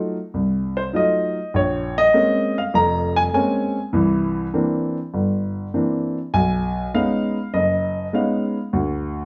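Jazz at 100 BPM in a swinging 4/4, this short cut from a longer piece features a solo baby grand piano with a warm, natural tone, sitting up front and spanning from low F1 to Bb5 over changes such as F7b9, Bbm9 and C9. The studio reverb is wet, with a 0.7-second tail, and the room is heard from further back with a soft, dulled top end. The piano plays alone throughout, with the harmony dropping to an N.C. marking at 8.7 seconds as it carries on to the end at 9.3 seconds.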